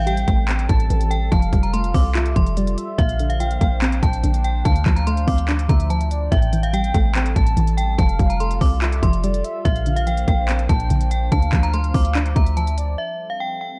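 Menacing and melancholic, this half-time trap hip hop excerpt at 144 BPM in A phrygian sets a ringing, inharmonic FM bell melody with chorus over a velvety, smooth synth lead with vibrato and tape echo, a dusty, detuned pluck with a filter sweep, and a nostalgic tape-like pad with phaser, all cycling through Am7, Fadd9, Bbadd9 and Dm7, while a deep, boomy 808 bass and an up-front trap kit of hard-clipped kick, crisp hi-hats and handclaps, roughened by 12-bit sampler grit, anchor a dark, dry mix.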